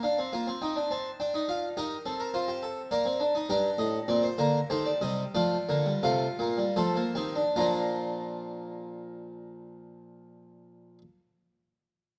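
In a straight triple metre, this excerpt from a longer baroque-style fugue moves with a stately yet lively step, then slows down between 2.6 and 7.6 seconds before a second section begins. A solo harpsichord in the Flemish style carries all four contrapuntal voices from 0.0 to 11.0 seconds, ranging from G2 up to A5. Its plucked tone is brilliant and full, with three sets of strings lending the sound weight and richness. Close, detailed miking places the instrument up front, while a moderate recital-hall reverb adds a gentle sense of space around it. The harmony circles the home chord through Eb, G minor and a Dmadd11 colour, and an F7 at 6.8 seconds leads back home just as the second section opens.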